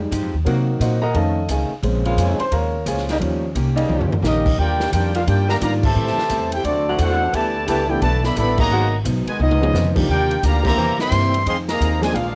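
A trumpet section with a soft attack and light vibrato sits up front carrying the melody from 4.2 seconds, entering alongside a warm trombone section on a second line, in this energetic, swinging big band jazz excerpt cut from a longer piece. Before the brass arrive, a woody upright piano with long sustain takes a solo, backed by a dark pizzicato upright bass with steel strings, a boxy picked archtop guitar with audible finger squeak tucked in the background, and an airy, polished drum kit with a punchy kick and medium-tuned snare that plays a fill just ahead of the horns. A clear, smooth-topped saxophone section holds sustained chords from 0.5 seconds to 10.9 seconds, while the harmony moves through chords such as Cm7b5, F7alt, Ebmaj9 and G69. Band accents punctuate the second half, and a light reverb plus a cassette-tape grain on the piano, guitar, drums and horns give the piece a homespun sound.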